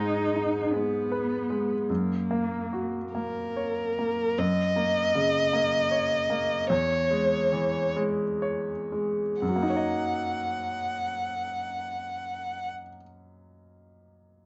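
In a rubato 6/8 lilt around 39-54 BPM that slows from 3.1 to 9.4 seconds, this tender, intimate neoclassical excerpt in F# major sets a bright baby grand piano with audible action noise and short sustain under a warm cello second line that sings with vibrato and portamento until 3.1 seconds, when a rich, smooth violin takes the melody, all in a moderate studio reverb with dark top end.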